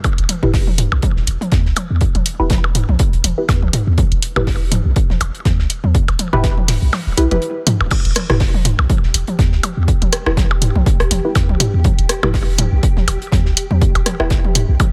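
A dry, close sound with little reverb frames this cool, sparse excerpt of minimal techno in E minor, moving at 122 BPM in 4/4 with a light swing on the sixteenths over a single Em chord. An up-front, punchy electronic kick anchors the groove, joined by a dry, punchy analog drum machine on hi-hat and crash, while a damped 70s acoustic kit adds a dark, smooth hi-hat and a fat snare with a rolled-off top, sitting low in the mix. A minimal click kit scatters percussion blips, rim clicks and toms through a digital delay. Underneath, a sine-based sub bass with a pitch-drop attack pumps against the kick, and a muted, detuned dub chord stab pairs sawtooth and square waves with a sub octave, its mellow filter pluck coloured by phaser, cassette tape and delay. The kick drops out between 6.9 and 7.9 seconds, and from 9.1 seconds a faint, swarming granular drone on G4 adds tense, evolving unison texture with its own reverb and sidechain pumping.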